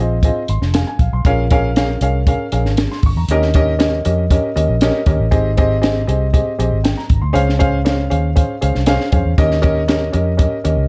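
Joyful and warm, this uptempo 1960s-style soul clip moves at 118 BPM in a straight 4/4, cycling through Fm7, Bbm7, Eb7, Abmaj7, Dbmaj7 and Eb7. A worn, woody upright piano, slightly detuned and with audible action noise, plays a fill from 0.2 to 1.2 seconds before settling into accompaniment, while a foam-muted, round fingered electric bass holds the low end. A compact cocktail drum kit enters at 0.2 seconds with a punchy kick, high-tuned snare and hi-hat, its top rolled off, and all three parts sit up front in a dark production with light reverb.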